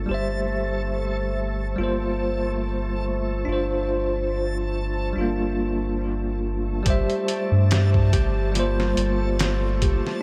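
This brooding, smoky trip hop excerpt opens with a bell-like tine electric piano, shimmering with tremolo and tape echo, over a round, deep analog bass sitting up front. Behind them a reversed, granular texture swells softly, detuned and dreamy, carried by its own reverb. The harmony drifts through chords held over a G in the bass, such as Am7/G and Bbsus2/G, dips to Gm7, then circles back to Am7/G. At 6.9 seconds a thumb-plucked concert harp joins with ringing arpeggios through analog delay, together with a gritty, pitched-down sampler-style kit of thumpy kick, medium-tuned snare and hi-hat in a lazy swung groove. The whole mix is soaked in a huge ambient reverb, giving the slow piece a hazy, nocturnal glow.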